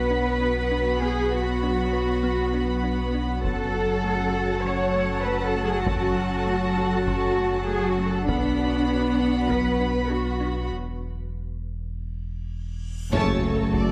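A bed of lush, vibrato-laden violins and background violas, a hollow, flute-like pad with ensemble chorus, a dark, woody cello section and a deep sine sub bass opens this vast, relentless hybrid orchestral and electronic film cue in F# minor at 99 BPM, with a very quiet, tine-like FM pluck tracing arpeggios from 0.1 seconds over Bm and F#m. Close, dry taiko drums struck with hard sticks enter at 3.4 seconds, and after a break at 10.7 seconds a drum fill, a huge reverse cymbal and a sub drop lead into an impact at 13.1 seconds. There a violin melody, mellow French horns, a brief clear trombone chord, a focused double bass section and a distant, roomy tuba land together on F#m in a moderate scoring-stage reverb before the cut.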